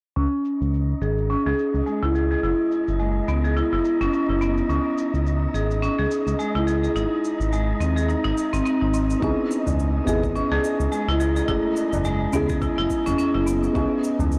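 A swung, unhurried 106 BPM pulse in 4/4 carries this meditative, mystical organic downtempo piece in C# minor, cut from a longer work, where up-front hard-mallet marimba arpeggios, boxy and filtered with tape echo and shimmer reverb, ride over a smooth, mellow sawtooth-and-triangle synth bass that pumps under sidechain, both shaped by filter sweeps, while a faint layered shaker and an airy, breathy wind-like noise texture fill out the mix. At 9.2 seconds a soft, felt-muted upright piano enters with dark, intimate accompaniment and audible action noise, joined by a soft, overdriven electronic kick and, from 9.4 seconds, a high-tuned, short-ringing tabla set close and dry in the background. The whole sits in a wet recital-hall reverb with small-room ambience, and the recording itself is blown-out and overdriven.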